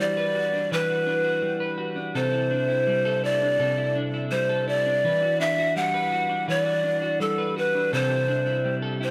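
A straight, unhurried 4/4 pulse carries this haunting, ethereal dream pop excerpt, where a clean electric guitar picks arpeggios through lush chorus and tape echo, moving between Em9 and C69 chords. Up front above it, breathy cane pan pipes sing the melody with vibrato, a crisp chiffing attack and lifted highs, their tape echo trailing each phrase. The whole 9.1 seconds sit in a light reverb with a dry, gritty hardware character.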